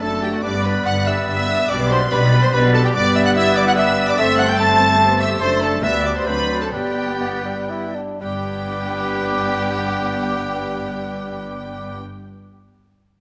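A moderate scoring-stage reverb surrounds this short orchestral passage, cut from a longer piece, and its top end stays gentle throughout. It is a cheerful, spirited classical-period movement in three, played with rubato and slowing between 4.8 and 8.2 seconds. A rich, expressive violin section carries the melody up high, while clear second violins, an airy, distant flute ensemble, a mellow clarinet and a solo oboe weave second lines behind it; underneath, a bassoon with light vibrato and smooth violas accompany, a tight French horn section holds sustained chords, a dark trumpet section adds stabs, and a close double bass section joins a lush symphonic cello section on the bass.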